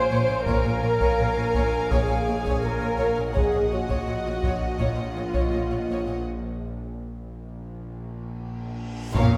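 A wet scoring-stage reverb wraps this short cut from a longer cinematic suspense score in a dark, ominous haze, moving at 83 BPM in a straight 4/4 over Bbm7 shifting to Ebm7/Bb. Two sections of symphonic violins float softly sul tasto, one carrying the melody between F5 and Ab5 and the other a second line beneath it. An up-front, lush viola section adds woody accompaniment with vibrato, while a rich cello section in the background and a distant, very quiet double bass section hold the low Bb. A tense, bright bowed-like drone on Bb1 hums throughout, and a dark, intimate chamber violin section adds a high texture that drops out at 3.0 seconds and returns at 9.2 seconds. A close taiko ensemble struck with hard sticks enters at 0.5 seconds, and a break opens before a drum fill. At 9.0 seconds a huge reverse cymbal and sub drop lead into a band accent at 9.1 seconds with a round, soft-mallet timpani hit.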